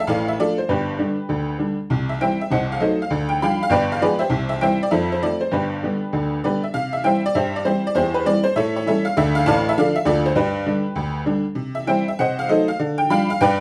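A jangly, metallic tack piano plays alone and up front for the full 13.6 seconds of this short stride-jazz passage, its boxy vintage tone spanning G1 to B5 in a moderate studio reverb. The mood is exuberant and playful at a brisk 198 BPM in 4/4 with a swung eighth-note feel, set in C major. Two matching phrases, the second starting at 6.7 seconds, move through chords such as Dm, G7b9, Cdim7 and A7 in this excerpt cut from a longer piece.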